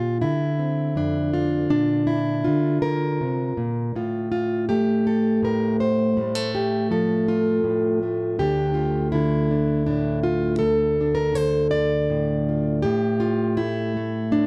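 A fingerpicked, plugged-in steel-string jumbo acoustic guitar sits up front with a full-bodied tone, carrying this reflective, haunting folk piece alone in a slow 6/8. Over about 14.5 seconds, taken from a longer performance, it moves through Bbadd9, F/A and Dm before settling on A5, ranging from deep bass notes up into the higher register. A moderate studio reverb and a dark production give the solo a shadowy, intimate glow.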